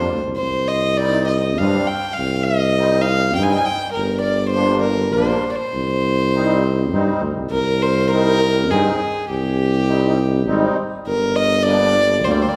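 A single bowed violin leads this klezmer excerpt, its tone soft in attack and airy, pure and floating, with a slightly boxy edge, sitting up front as it carries the melody between G4 and Ab5. The mood is bittersweet and soulful, moving at 101 BPM in a straight 3/4 in C minor, with the harmony shifting between Cm and Gm. Beneath it, a musette accordion fills in the accompaniment with a reedy, shimmering, vintage sound that feels band-limited. A mellow tuba, also up front, holds down the bass with vibrato, a punchy attack and a smooth top. The three play together from the opening through about 12.5 seconds, framed by a recital hall reverb that places the listener further back in the room, and the passage is cut from a longer piece.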